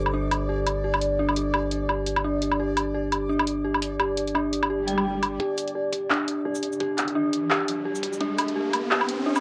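An eerie, warbling detuned FM synth bell arpeggiates up front over a deep, mellow 808-style sine bass and a reversed, dreamy granular texture to open this dark, tense half-time drum and bass cut at 171 BPM, with a swung kit of bright hats, handclaps, shaker and woodblock re-recorded in a small room on cassette, an electronic swell and riser arriving at 4.8 seconds, and a knocking layered kick entering at 5.4 seconds as a filter sweep on the bell drives the build-up in a wet booth ambience.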